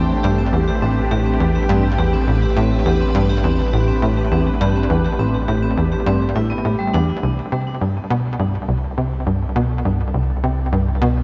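Ambient, sequencer-driven space music with a luminous, cosmic mood, cut from a longer piece, in which a punchy, nasal sequencer bass riff sits up front with lush chorus, delay and shimmer reverb, over a deep, round analog bass and the mellow sustained chords of a vintage string machine with ensemble chorus, while a bright, metallic vibraphone struck with hard mallets plays arpeggios from 0.2 to 7.0 seconds, before the harmony shifts from A minor to C at 7.2 seconds, all in a dark production inside a concert-hall reverb.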